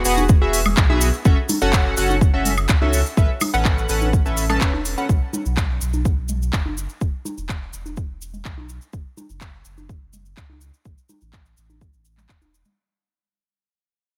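A glossy, retro chorused polysynth sits up front with pumping stabs and tape echo, carrying the chords only until 5.1 seconds in this euphoric, uplifting progressive house excerpt. Beneath it sit a deep, tape-warm electronic kick and a saturated, thick sub bass that pumps with the sidechain, while a house kit of crisp hats, handclaps and woodblock mixes with analog-toned congas and a grainy, close cabasa. Light digital reverb adds space as the whole passage fades out.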